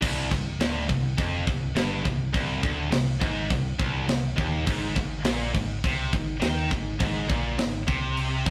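A rough rehearsal-room sound with tube saturation and moderate studio reverb frames this dark, aggressive heavy metal cut from a longer piece, moving at 103 BPM in 4/4 in C minor. A bright, double-tracked high-gain guitar drives the riff up front with distortion, shifting from C minor to Ab5 at 4.7 seconds, while an overdriven, round picked electric bass growls underneath. A tight, mid-forward acoustic drum kit with a medium-tuned snare, tight kick, crash cymbal and rolled-off top sits up front throughout all 8.5 seconds.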